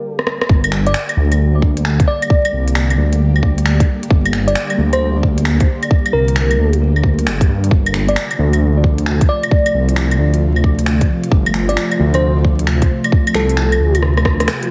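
Heavily compressed, radio-like sound sits under a layer of vinyl crackle, with light reverb and a digital ambience framing this rainy, melancholic future garage excerpt cut from a longer piece. A tight electronic kick and a deep, rumbling detuned saw bass sit up front, the bass saturated, beating and dark, and pumping against the sidechain. An organic electronic drum kit of claves, finger snaps, crisp hi-hats and rim clicks rides a swung sixteenth-note feel, opening with a short fill at 0.2 seconds and closing with another at 14.0 seconds. An ethereal, airy pad enters at 1.1 seconds with slow-attack, full-bodied chords, mellowed by ensemble chorus and its own reverb while it pumps along with the bass. Above it, a bell-like FM electric piano adds sparkling, warbling, vintage melody notes colored by chorus and dub echo, as the harmony moves from G minor to F over G at 7.7 seconds.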